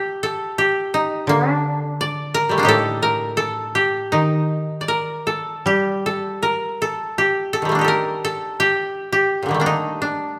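A woody, up-front koto played with fingerpicks carries the melody from the first moment to the end at 10.4 seconds, ranging from Bb2 to D5 in the D miyako bushi scale. A second dry, woody koto supplies a lower accompaniment between 1.3 and 7.9 seconds. This short, austere and calm excerpt of Japanese traditional chamber music moves in a rubato 2/4 at roughly 77-87 BPM, set in a moderate scoring-stage reverb.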